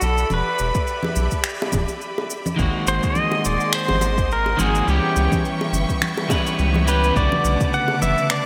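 Sunset chillout with a relaxed, wistful mood, this short cut from a longer piece moves at an easy pace with a gentle swing on the sixteenths. Up front, a clean, twangy pedal steel guitar carries the melody, its fingerpicked, compressed slide tone drifting through delay and shimmer reverb, while a distant, lush studio string section holds bowed chords with vibrato behind it. A round analog bass sits up front with a dark, nasal, tube-saturated tone, and the chords pass through Em7, G#7, C#m7b5 and Bm7. Electronic shaker, congas and finger snaps with gated reverb run throughout, joined at 0.8 seconds by a deep, layered, overdriven electronic kick and at 1.0 seconds by tight, high-tuned bongos struck with hard hands in the background. At 2.6 seconds a slightly broken-up, picked electric guitar enters up front as accompaniment, bathed in shimmer reverb. The bright 1980s-style digital production places it all in a moderate, lush hall.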